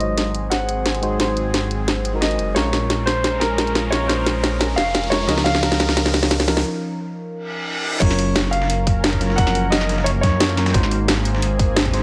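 Lush and warm, this liquid drum and bass excerpt at 176 BPM in Gb lydian spends its first eight seconds as a build-up, with a filter sweep on the grand piano melody over a mellow, round FM electric piano, a thick detuned unison pad, a deep rumbling saw bass and an up-front garage kit with a cracking snare, while a riser and reverse cymbal sit in the background before a break at 6.7 seconds, then the drop at 8.0 seconds brings in a tight electronic kick and a gritty, overdriven sampler-style kit under a moderate plate reverb.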